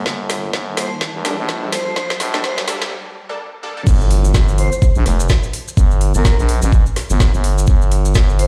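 A dark, detuned analog pad with slow-attack chords and a thick, growling FM bass, both pumping with sidechain, open this bouncy, aggressive bass house excerpt in G minor at 126 BPM with a swung 16th feel, while an overdriven, knocking kick and a garage kit with woody snare, metallic hats and crash play a drum fill under a background riser. An airy, dreamy lead with phaser, chorus and dub echo enters at 0.8 seconds, and a bold, bright sawtooth orchestra-hit-like stab with a filter sweep fills the build-up and a brief break. At the drop at 3.9 seconds an impact lands as grainy, mellow maracas join, the mix sounding fairly dry, like a big sound system in a bare stone room.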